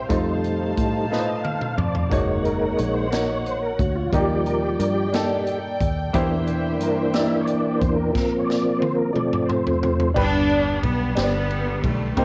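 Recorded at home on cassette in a small, moderately reverberant room, this soulful, uplifting slow gospel piece in 6/8 sets an up-front tonewheel organ, soloing through a slow rotary speaker with chorus vibrato, over a clear baby grand piano with short sustain, a dark, woody string section holding chords until 8.1 s, a punchy, foam-muted fingered electric bass and a polished big-band drum kit with dark cymbals and fills, before a focused, lush string melody with analog delay enters at 10.2 s once the organ stops.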